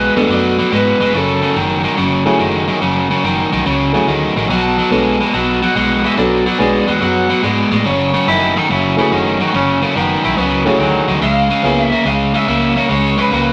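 A biting, up-front overdriven guitar drives this soulful, mournful electric blues shuffle in F# minor at 143 BPM, its riff running throughout beneath a bright, compressed lead guitar with phaser that plays melody in spurts until 13.5 seconds. A dark, round, foam-muted fingered bass anchors the low end while a clear, woody upright piano with audible action noise accompanies from 0.2 to 11.9 seconds, and an edgy, forceful tenor saxophone with vibrato takes a jazz-style second line from 8.3 to 11.1 seconds. The chords move from Bm7 to F#m7 and land on C#, all set in a small, wet room.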